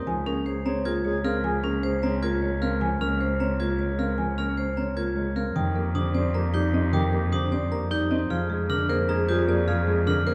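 A woody rosewood marimba melody opens this meditative, hypnotic minimalist classical pattern piece in Bb minor at 306 eighth-note beats per minute in 7/8, over a natural-toned baby grand piano, sparkling brass-mallet glockenspiel arpeggios and bright, ringing hard-mallet vibraphone arpeggios, while a focused, up-front bowed cello with vibrato carries the bass and a mellow clarinet in the background plays a second line that drops out at 2.6 seconds and returns at 5.6 seconds as the harmony moves from Bbm7/Db to Ebmaj7/F and then Bb9/F, all in a dark production with moderate recital hall reverb.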